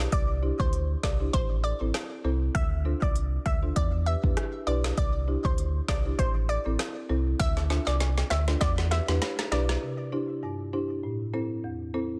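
An up-front afro-pop drum kit with a deep kick, woody snare with soft clipping and crisp hats drives this summery, bouncy dancehall excerpt at 99 BPM in C major, joined by a full, sine-toned sub bass with octave, a bright, detuned analog pluck melody carrying chorus and digital delay, and a dry, rustic folk marimba with sidechain pumping, all over a progression cycling through Cadd9, Am, Dm7 and Em7, with a drum fill from 7.4 seconds before the marimba carries on alone from 9.8 to 12.1 seconds in a dense, heavily limited mix with light reverb.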